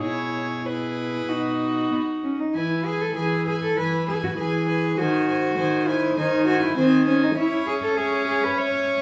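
A small room's light reverb surrounds this brief excerpt of a quick classical-period movement for string quartet, set in E major at 99 BPM in a straight 4/4 with a graceful, cheerful mood. Four bowed players in period style share a reedy gut-string tone, and all play throughout the 9 seconds. The first violin carries the melody between B4 and G#5 with a warm voice, while the second violin adds a rich second line with light vibrato. The viola's accompaniment has a smooth top, and the close cello bass, ranging from B2 up to C#5, sits up front beside it, both heard more prominently than the violins. The harmony moves from E over B toward B, settles on E as a new phrase begins at 2.5 s, then passes through G#7 over D# to C-sharp minor.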